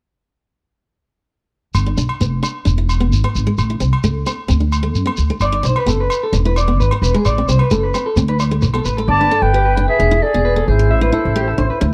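A dry, close 1970s-style studio sound with small-room ambience frames this warm, danceable highlife guitar band excerpt, where a woody, thumpy upright bass, ringing agogo bells, grainy shekere and a picked steel-string acoustic guitar with finger squeak set a straight groove, a slightly broken-up electric guitar adds arpeggios with lush chorus and slapback echo from 5.4 seconds, and at 9.1 seconds a hollow, distant silver concert flute takes the melody over a raspy, growling trumpet second line.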